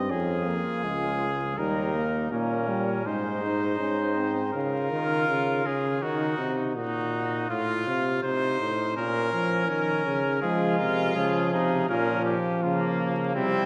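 A classical imitative canzona for brass ensemble, contemplative and serious, moving at 82 BPM in 4/4 and settling into Bb minor from 4.5 s in this excerpt. An up-front clear trumpet carries the melody over a distant, roomy second trumpet line with light vibrato, while a soft-attack, vintage-toned bass trombone anchors the bass. A euphonium with light vibrato supplies accompaniment, falling silent at 4.5 s and returning at 10.4 s, all set in a wet church reverb with vinyl crackle.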